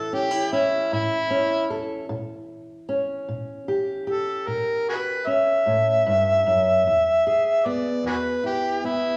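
An overdriven, amplified harmonica carries a gritty, soulful melody from the start, with light vibrato, soft attacks and tongue slaps in a jazz-style solo, while a fingerpicked steel-string acoustic guitar plays warm accompaniment beneath it. This laid-back acoustic country blues in a straight 12/8 moves from A to A#dim7 at 2.1 seconds and settles on E at 6.9 seconds. Both instruments sit up front in a moderate recital-hall reverb, and the clip is cut from a longer piece.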